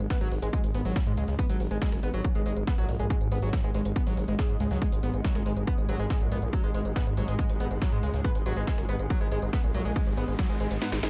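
A screaming, guitar-like overdriven synth lead carries this hypnotic, industrial peak-time techno excerpt at 140 BPM over an F#sus2 chord, driven by a heavy, up-front electronic kick, a nasal, sidechain-pumped synth bass, a tense swarming drone with reverb and chorus in the background, a techno drum kit with cracking snare and smooth hats, and a compressed breakbeat sampler-style kit with high-tuned snare and tambourine, while a very quiet riser enters at 9.5 s and the kick drops out for a drum fill at 10.8 s.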